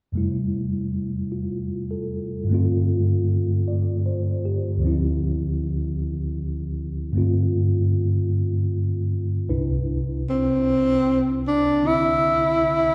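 Tender and late-night, this short jazz excerpt moves at a slow 51 BPM in 4/4 with a lazy swing on the eighth notes, settled in C major. A mellow tine electric piano carries the accompaniment from the start, its clean tone heard through built-in speakers and placed up front. The harmony drifts from Fmaj7 to G7sus4, then Dm7 and back to G7sus4 before resolving onto a Cmaj9 as a new section opens at 9.5 seconds. At 10.3 seconds a breathy tenor saxophone enters with a close-miked, subtone solo line in a narrow middle range, its warm vibrato sitting at the front. A wet scoring stage reverb with a 1.8-second tail gives the recording a sense of being heard from further back in the room.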